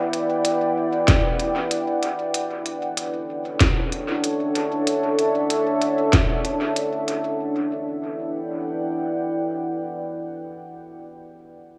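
A straight 4/4 groove of crisp hats and a woody snare, soaked in dub echo, runs until 7.2 seconds, joined at 1.1 seconds by a punchy, overdriven electronic kick up front, while a deep, moody pad of detuned sawtooth with chorus and a slow attack sustains Em7 and Dmaj7 chords through this meditative, spacious ambient dub fragment, bathed in spring reverb and small room ambience.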